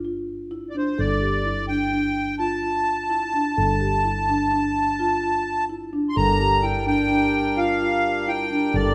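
Soft-mallet marimba arpeggios with a mellow, rosewood tone and a growly, hollow-body fretless electric bass holding a low G open this pensive, hypnotic chamber piece in 11/8 at 256 BPM (eighths) in G dorian, with a sweet, reedy accordion entering up front at 0.7 seconds with a melody carried on its light tremolo tuning, and a breathing, boxy hand-pumped harmonium adding sustained chords at 6.2 seconds as the harmony moves from Gsus2 to Gm, all heard in a moderate recital hall reverb in this section cut from a longer piece.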